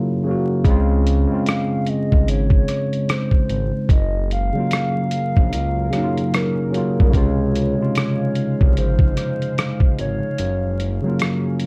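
Nostalgic and mellow, this lo-fi hip hop excerpt drifts along with a lazy swing, cut from a longer piece and dusted with vinyl crackle and light reverb. A worn, slightly out-of-tune tine electric piano opens the excerpt, lightly overdriven through a combo amp and softened by cassette tape, laying down chords that move between Gbmaj7 and Dbmaj7. The sampler-style drum kit arrives at 0.6 seconds, compressed and muffled, with a thumpy kick, hi-hat and rim click that sound re-recorded in a large room, and a smooth, saturated synth bass sits up front beneath it. Over the top, a hollow, woody clarinet-like synth lead carries the melody from the very start with vibrato, chorus and analog delay. From 2.4 seconds a deep, moody ambient pad settles in the background, its detuned sawtooth layers and sub octave blurred by chorus and built-in reverb. Near the end the kick drops out at 10.4 seconds while the electric piano, pad and remaining drums carry on.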